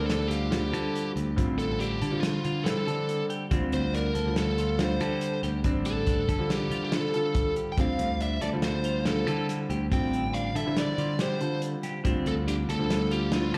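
Driving and brooding, this progressive instrumental excerpt moves at 141 BPM in 5/4 with a straight feel, sitting in D minor over a single Dm7 chord. A biting, overdriven lead guitar carries the melody up front, its picked line touched with slapback echo. Beneath it, a clear grand piano plays intimate accompaniment with audible action noise, while a dark, clean electric guitar picks arpeggios colored by phaser and slapback echo. A bright, growly picked electric bass gives a punchy, direct low end, and a soul drum kit with a tight kick, medium-tuned snare, hi-hat and rolled-off top enters at 0.1 seconds. The whole band is heard as a live gig through the venue's PA, with light club reverb and a sense of the room around it.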